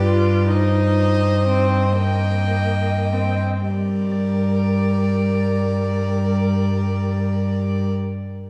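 Classical slow romantic movement for string quartet in G minor and 6/8, yearning and solemn, moving in a rubato pulse of 33-44 BPM that slows over the first 3.7 seconds as the harmony passes from G to Cm/G and settles on Gm. All four bowed parts play sul tasto throughout: a soft-attacked, airy first violin floats a pure melody above a dark, woody second violin shaded with vibrato and portamento, while a close, intimate viola adds gentle accompaniment with light vibrato and a rich cello holds the bass up front. A church reverb with a 2.6-second tail surrounds the quartet in this brief fragment cut from a longer piece.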